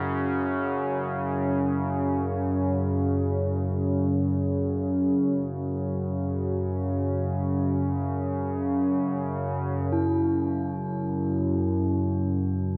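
An analog drone and a bronze singing bowl sound together from the very start, opening a vast, ominous dark ambient piece cut from a longer work. The drone sits up front in a low register, a detuned sawtooth and pulse-wave tone with pulse-width modulation and chorus that gives it a warbling, vintage character as it slowly evolves. It fades in on a slow attack, then sustains on a long release, holding a single C#madd11/F# sonority throughout. Further back, the bowl rings on a single E4, struck with a wooden striker, its dark, metallic tone carrying a slow beating that lends a meditative stillness. A cathedral reverb with a 5.4-second decay bathes the sound in a drenched, cavernous space. Around 9.9 s the piece moves into a new section, which continues until the clip ends at 12.8 s.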